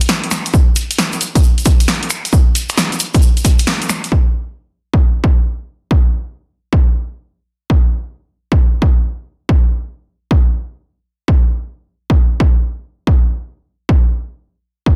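Bouncy and sunny, this UK garage cut rides a swung sixteenth-note groove in 4/4. A punchy analog drum machine opens with finger snaps, hi-hat and snare, sitting up front with a tape-warm, big-room character. A grainy, mellow tube shaker rests in the background. A punchy electronic kick joins at 0.5 seconds. The whole band hits an accent at 3.7 seconds, and at 4.1 seconds the drum machine and shaker drop out, leaving the kick to carry the rest of the excerpt. The sound is dry, dense and heavily limited, with a modern, loud finish.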